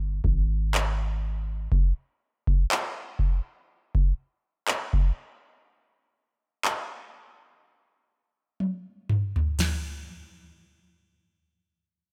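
A booming analog drum machine sits up front and carries this contemporary R&B excerpt, its deep kick and crisp snare joined by handclaps, toms and a crash cymbal, with the sound of a small room clinging to it. The groove moves slowly in four with a light swing on the sixteenths, giving it a longing, late-night mood. A warm, deep, sine-like 808-style bass with a noise layer opens the piece, striking with a fast attack and then decaying mellowly before it drops out at 1.7 seconds. The drums keep going alone and close with a fill at 8.6 seconds, falling silent at 9.8 seconds. The mix is dry and close, with little reverb around either part.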